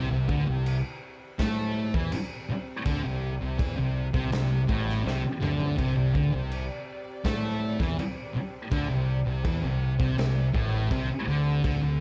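Stoner and doom metal with a hypnotic, brooding feel, built on two thick, picked fuzz guitars playing a riff, one up front and one in the background, over a growling, overdriven fingered electric bass and a raw, punchy garage drum kit with a rolled-off top that drops in a fill at 5.1 seconds, while a tense, detuned, string-like drone with phaser and vibrato sustains chords behind them in a dark production with small-room ambience.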